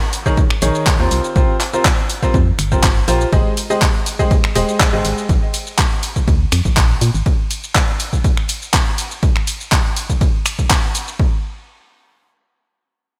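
A straight 4/4 groove at 122 BPM drives this joyful, euphoric piano house drop, with a punchy analog-style electronic kick up front and a layered, overdriven garage kit of finger snaps, handclaps, hi-hat, ride cymbal and shaker wrapped in gated reverb. A clear, slightly worn grand piano plays the riff between Eb3 and Eb5, pumping against the kick and trailed by digital delay until it stops at 5.3 seconds. Beneath it, a hollow, organ-like FM bass with a fast attack and dark, decaying notes moves between Eb1 and Bb2, thickened by tube saturation and pumping in the same way before it falls away at 7.2 seconds. The harmony moves from Eb7sus4 to C7sus4, Abmaj7 and Bb before dropping to kick and kit alone, and the drum kit stops at 11.2 seconds as this excerpt of a longer piece turns toward a brief new section. Light reverb and digital ambience give the mix a bright, 1980s-style digital sheen.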